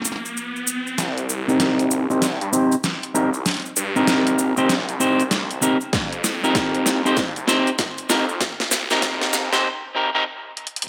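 Glitch hop at 97 BPM in C minor, swaggering and funky with a swung sixteenth feel, this excerpt opens on a one-second electronic riser over an F9sus4 chord before a build-up moves through Cm7 and back to F9sus4 at 5.9 s, carried by filter sweeps and drum fills. Up front, a slightly broken-up electric guitar plays stabs dressed in vintage 12-bit sampler grit, sidechain pumping, low-pass filtering and dub echo, while a dubstep drum kit with a deep snare and hi-hat drives along beside a grainy, bright cabasa. A swirling, thick detuned saw bass with phaser and overdrive enters at 1.0 s, a punchy layered electronic kick joins at 5.9 s, and a break arrives at 9.6 s, all set in a moderate plate reverb.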